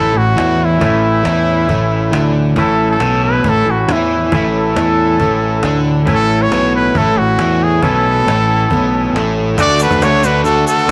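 Indie rock with a wistful yet upbeat mood, moving at 137 BPM in a straight 4/4 and centred on A major, cut from a longer piece. A breathy, whispered trumpet carries the melody up front, its soft attack and vibrato giving an intimate pop-style solo voice, coloured by cassette tape and tape echo. An overdriven semi-hollow guitar plays a picked hollow-body riff up front, while a twangy, compressed electric guitar with subtle chorus fingers a clean riff in the background. A growling fingered electric bass adds overdriven low end, and a woody cajon played with hard hands and faint snares sits in the background from 0.2 seconds. The kick and snare drop out at 9.4 seconds, and at 9.6 seconds the harmony shifts from A to D as a grainy, band-limited tube shaker enters for the final stretch, all set in a small room with light reverb and the feel of a home cassette recording.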